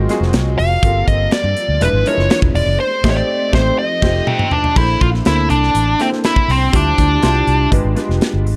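A straight 4/4 groove at 122 BPM drives this short, slick slice of polished 1980s jazz-funk pop, cut from a longer piece and carrying an urban mood. A modern studio drum kit enters at 0.1 seconds with a punchy kick, a medium-tuned snare, hi-hat, toms and crash cymbal in an airy small room, while a vintage muted fingered electric bass sits up front with a round, foam-muted, amped tone. A clear concert grand piano with deep bass and short sustain plays accompaniment through analog chorus, and a very quiet string machine adds shimmering, sawtooth violin chords until 4.7 seconds. From 0.6 seconds a nasal, overdriven lead guitar with a parked wah carries the picked melody up front. The harmony moves through rich chords such as Ab13, E7b9 and Bbmaj9#11, with a band accent and a drum fill leading into the second section at 4.8 seconds, all framed in a dark production with light reverb.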